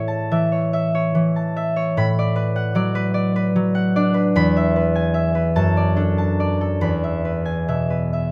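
Serene and peaceful, this brief classical passage, cut from a longer piece, features a solo concert harp playing in a gently rubato 6/8 lilt. The fingerpicked harp rings out warm and up front, spanning from E2 to C#6, captured by close, detailed microphones with light reverb. Over its 8.3 seconds the harmony moves from A through Bm/A and E to D/F#, settling back on E at 6.9 seconds.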